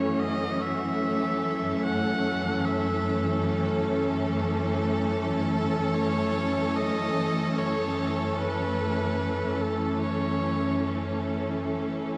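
This reflective, melancholic ambient passage, cut from a longer piece, opens with a lush symphonic string section sustaining a minor seventh chord, its smooth bowed vibrato sitting close and up front. A clear, biting electric violin carries the melody above it, an intense solo voice with a tape echo trailing each phrase, set somewhat lower in the mix than the strings. The music drifts in free time, held in a single harmony that lends it a suspended, wistful stillness. The violin falls away at 11.2 seconds, and a dark bowed double bass section enters at 11.7 seconds, barely audible beneath the strings. A plate reverb soaks the whole mix, giving it a dreamy, floating sheen.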